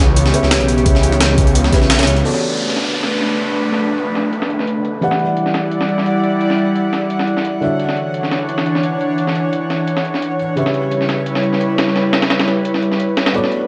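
Two gritty, compressed breakbeat kits set a lightly swung 173 BPM groove in 4/4. One sits in the background with filtered hats, snare and crash, while the other carries high-tuned snare and hi-hat through high- and low-pass filters. A thumpy electronic kick appears briefly and drops out at 1.9 s, where a band accent sounds just before the move into the second section at 2.2 s. Up front, a menacing detuned saw bass with a filter swell holds the low end only through those first 2.2 s, and an electronic downlifter then sinks through the mix until 5.0 s. Throughout this soulful, dreamy liquid drum and bass excerpt, a breathy, full-bodied pad sustains chorused chords that pump against the beat. Beneath it, a felt-muted upright piano adds intimate, vintage accompaniment with audible action noise and a touch of tape echo. The harmony drifts from C#m7b5 through Bm9, Em9 and Dmaj9 before returning, all bathed in plate reverb with a softened top end.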